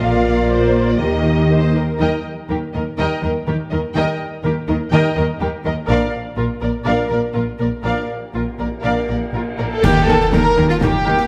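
Adventurous and soaring, this heroic film-score fragment moves at a steady straight pulse, with a lush, vibrato-rich violin section carrying the melody over a rich, up-front second violin line, smooth violas, expressive cellos and a deep double bass section, while a mellow French horn section holds sustained chords in the background until 9.0 seconds. Soft-mallet timpani with round calf heads strike at 1.0 and 9.8 seconds, and dark cymbal swell, clash cymbals and concert bass drum build from 5.9 seconds. At 9.8 seconds a band accent arrives as a very quiet mellow tuba joins, along with concert snare drum, bright clash cymbals and bass drum, all set in a wet recital-hall reverb.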